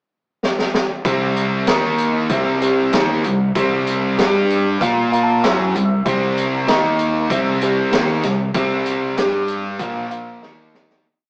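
A straight 4/4 pop groove at 96 BPM drives this short, swaggering and sunny classic rock piece, where a vintage drum kit with a high-tuned snare and punchy kick fills from 0.4 s into a power-chord riff at 1.1 s, played by a dark, up-front overdriven guitar and a bright distorted guitar over a fuzzy fingered bass that doubles the riff in driving eighth notes, while a barky, phased reed electric piano pushes close-voiced chords and adds a fill at 4.8 s, all in a rough rehearsal-room sound with stone room reverb before a fade-out from 8.6 s.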